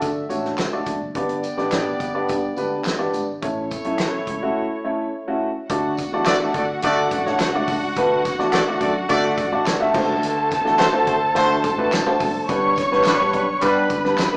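Uptempo 1960s-style soul at 106 BPM in D major, this joyful fragment of a longer piece puts a woody, slightly detuned vintage upright piano and a clear, smooth-topped horn section with light vibrato up front, over a round, dark fingered electric bass in the background, a natural acoustic drum kit with a fat snare and punchy kick, close tambourine, egg shaker and group handclaps, and very quiet, soft-handed congas entering at 0.3 seconds. A muted, veiled and lush bowed string section joins at 5.7 seconds, after the chords have moved from D through G and A, as the harmony returns to D and then moves on to D7 and G, the band playing live in one room under a wet, large studio reverb with a small-speaker sound.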